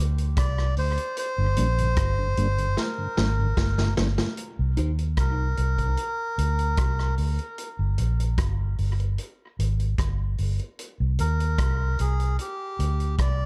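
This dub reggae excerpt opens on a soft, flute-like tonewheel organ sitting in the background with chorus vibrato and a slow rotary speaker, joined immediately by a round, foam-muted electric bass that sits up front in deep, dark tones. Moving at 75 BPM in a straight 4/4 in C minor, the opening is a break that includes a drum fill from 2.8 to 4.4 seconds, and the organ drops away at 4.3 seconds. The vintage kit of hi-hat, kick, rim click and medium-tuned snare has a punchy kick and a rolled-off top, captured naturally in a studio room. Over it, a reedy, nasal melodica carries the melody from 0.4 seconds, its breathy tone trailed by tape echo. A clean, compressed electric guitar makes only a fleeting appearance around 4.8 seconds, also fed through tape echo, as the music settles into a spacious passage moving between C minor and chordless stretches. Studio reverb gives the whole production a dark, warm depth.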